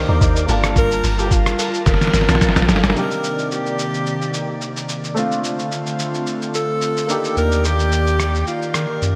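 Amapiano at 109 BPM in C dorian with a late-night, deep mood, this excerpt sets a breathy alto saxophone melody with delay over a polished grand piano, an airy detuned pad pumping under sidechain, a round, percussive log drum bass that stops at 3.0 seconds, clean tonewheel organ stabs through a slow rotary speaker in the background, and a muffled, thumpy lo-fi sampler-style drum kit with gated reverb and a fill before a thick, saturated sub bass arrives at 7.4 seconds, all in a lush hall with bright 1980s-style digital production over chords moving from Gm9 through Cm9 and Dm7 to Ebmaj7.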